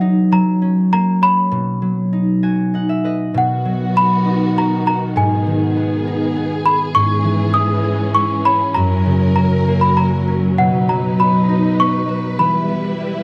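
A gentle, innocent children's lullaby in a steady three, cut from a longer piece, where a small bell-like celesta sings a sweet, delicate melody over ringing, fingerpicked concert harp that sits up front and adds fills around 2.1 and 13.0 seconds, before a dark, lush bowed string section with expressive vibrato enters at 3.3 seconds with sustained chords, all heard through close, detailed microphones in a moderate recital hall and closing on an E minor chord.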